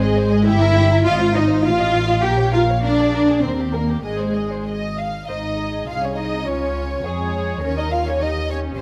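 A moderate scoring-stage reverb surrounds this spirited, cheerful string orchestra fragment in Ab major at 102 BPM in 2/4. A warm, floating first violin section carries the melody over a woody, lush second violin line, a pure viola accompaniment in the background, a dark cello bass with vibrato, and an up-front double bass, all bowed sul tasto through chords moving from Gm6 toward Eb.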